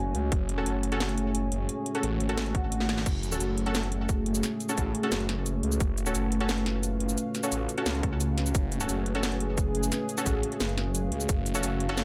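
A swirling, phased detuned saw bass sits up front in this tense, dark technical drum and bass excerpt at 175 BPM in F# harmonic minor, holding on F#m beneath a moody analog pad with chorus and a lo-fi, warbling tape-like pad in the background, all three pumping against the sidechain. A tight, overdriven electronic kick punches in at 0.3 s, 2.5 s and 8.0 s over a drum kit of cracking snare, metallic hats, cabasa and crash, with a drum fill at 2.8 s. A bold, bright orchestra-hit-like synth stab with reverb and delay enters at 0.6 s, and a faint electronic swell sounds from 2.5 s to 3.1 s.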